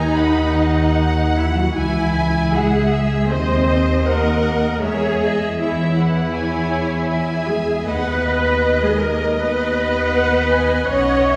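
The pulse moves at 79 BPM in 4/4, but the beats are uneven and the phrasing stretches freely in rubato, giving this slow romantic movement for string orchestra a serene, unhurried feel in B major. A focused first violin section carries the melody between C#5 and B5 with a smooth top, while a second violin line, close and expressive, sits just beneath it from B4 to G#5. The viola section supplies an even accompaniment that stands up front in the balance, and the double basses, also prominent, anchor the low end with a rich, smooth tone. Dark, woody cellos fill in the bass register between them, and every section plays bowed with vibrato from 0.0 to 11.4 s. The harmony moves from B/D# through C#m, Cdim/Eb and C#m/E before returning to B/D# at 7.9 s, all heard from further back in a reverberant concert hall, in a short passage cut from a longer piece.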